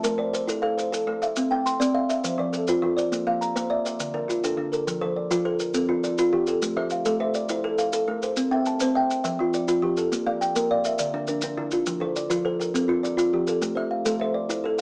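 Southern African traditional music in a rippling, mbira-style interlocking cycle in 12/8, cut from a longer piece, where two kalimbas weave arpeggios throughout, one woody and ringing with a hollow, dark, up-front tone and the other quieter, short and airy with a solid-board thumb pluck, over close, grainy maracas, all heard through light reverb with a small-speaker sound as chords cycle from Am through C, F, Bb and Dm.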